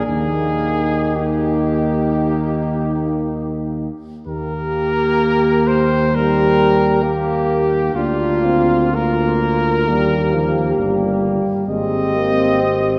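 In a rubato 4/4 pulse, this serene, lyrical hymn-like fragment for brass band sets an up-front, mellow cornet melody with light vibrato over a distant, roomy French horn section, a warm euphonium and a tight, smooth-topped trombone section in the background, all resting on a dark tuba bass and bathed in wet church reverb as the harmony moves from Eb through Bb/D back to Eb and settles on Abmaj7 near 11.7 seconds.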